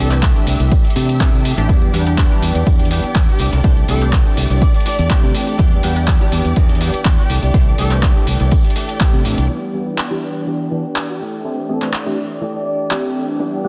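A punchy, tape-warm electronic kick sits up front in this groovy, funky excerpt of filtered disco house, driving alongside an analog drum machine's handclaps and pumping hi-hats, a very quiet tambourine, a bright tube-saturated fingered bass, a twangy clean electric guitar riff, and a mellow sawtooth polysynth comp with chorus and phaser, while lush bowed strings and a horn section with light vibrato and dub echo sit in the background, until the kick drops out at 9.1 seconds and the bass at 9.5 seconds as a filter sweep carries the final stretch.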